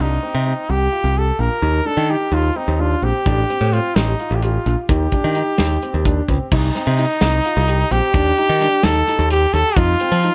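In a lightly reverberant mix, this driving, tense progressive instrumental in 7/8 at 258 BPM (eighths) and C dorian opens with a bright, growly, punchy picked electric bass up front, an intimate grand piano with audible action noise and long sustain playing arpeggios in the background, and a warm jazz-style trumpet with light vibrato and delay carrying the melody, before a tight, mid-forward soul drum kit with a rolled-off top enters at 3.3 s on kick, snare, hi-hat and crash.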